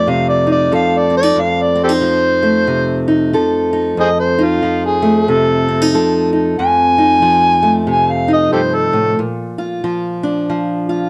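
A gritty, overdriven harmonica leads this swaggering, laid-back acoustic country blues in F mixolydian at 92 BPM with a swung feel, playing a jazz-style solo full of vibrato, tongue slaps and scooped notes in plate reverb over an F7 chord until it drops out at 9.2 s, while a bright, boxy parlour steel-string guitar fingerpicks up front with audible finger squeak, moving to Bb and carrying on alone to 11.1 s in this dark, short cut from a longer piece.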